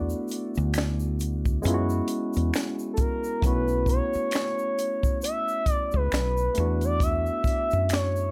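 An expressive portamento lead carries the melody from A4 to E5, its smooth sawtooth-and-triangle tone gliding between notes with vibrato, a fast attack and long sustain, set up front with chorus and plate reverb. This late-night, soulful neo-soul and R&B piece moves at a slow 67 BPM in 4/4 with a swung sixteenth-note feel, in B dorian and tuned to A4 = 438 Hz. Beneath it, a barky tine electric piano plays bright, lightly overdriven chords through a combo amp, dressed in lush chorus and plate reverb, cycling through E9sus4, F#9sus4 and B9sus4 before returning to E9sus4 at 6.6 seconds. A woody fretless electric bass holds the low end with a round, hollow-body tone that is dark, direct and punchy, also placed up front. A compact, dry cocktail drum kit enters at 0.3 seconds with a punchy kick, a high-tuned snare, hi-hat and finger snaps, while a quieter layer of egg shaker and group handclaps adds acoustic texture from a small room. 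The whole is a short cut from a longer piece, sitting in light reverb.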